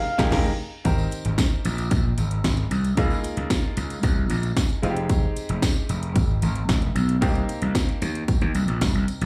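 A growly, overdriven slap bass and a punchy, layered house drum kit with a cracking snare and metallic hats sit up front from 0.2 s in this danceable early-eighties boogie funk cut at 113 BPM in F minor, while a smooth sawtooth synth lead with chorus and vibrato sounds a single F5 over an opening band accent. A brilliant grand piano with slapback echo comps through Fm11, Abmaj9, Db69, Fm7 and Cm7, and a jingly, distant tambourine enters at 0.9 s. The whole excerpt has the feel of a live gig heard through a venue's PA, bathed in club reverb.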